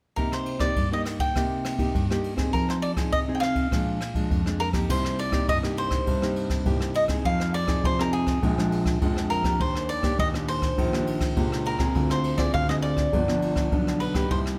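Samba and choro at 102 BPM in C minor, bittersweet and nostalgic: a crisp, picked cavaquinho carries the melody over a full-bodied, fingerpicked nylon-string guitar with audible finger squeak and an airy brushed jazz kit with dark cymbals and a boomy kick, joined at 4.9 s by a dark, mellow baby grand piano on the bass line, as the harmony moves from Cm7, Fm7 and Bb7 to Ebmaj7, Dm7b5 and G7, the mix sitting in a moderate large-studio reverb in this excerpt cut from a longer piece.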